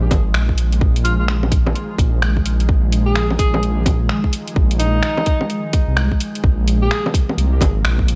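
Under light reverb and a bed of vinyl crackle, this ghostly, wistful future garage fragment at 128 BPM sets a distant, roomy alto saxophone with vibrato and analog delay, entering at 1.0 s, over an airy, chorused pad with sampler grit, a deep, rumbling detuned saw bass pumping up front beneath it, a tight layered kick, and bongos, finger snaps and bright hats swung on the sixteenths, moving from Fm7 to Bbsus2 at 6.4 s.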